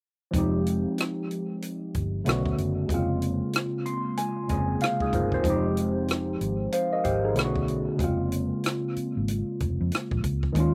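Late-night and introspective, this short excerpt of neo-soul R&B moves at 94 BPM in F minor with a swung sixteenth-note feel, built on minor-ninth chords such as Fm9 and Bbm9/F. An overdriven tine electric piano sits up front with a barky, gritty bite and a phaser, adding a fill from 3.5 to 5.4 seconds, while a vintage muted fingered electric bass supplies a dark, round, foam-muted low end. A compact cocktail drum kit plays hi-hat, punchy kick and rim click with a natural small-room sound, all in a dry mix with little reverb.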